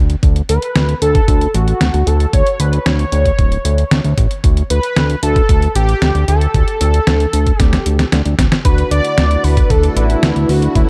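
A fat, saturated analog bass opens this romantic, dreamy synthwave excerpt, joined almost at once by a thumpy electronic kick and a detuned 8-bit drum machine's hi-hat and medium-tuned snare, both with a taped, small-room character. A bold, bright unison lead carries the melody with vibrato, analog chorus and tape echo, over a dark production with light reverb. After a drum fill, at 8.7 seconds a shimmering string machine of violins and a silky, sidechain-pumped string pad enter in the background, along with brassy synth stabs with chorus.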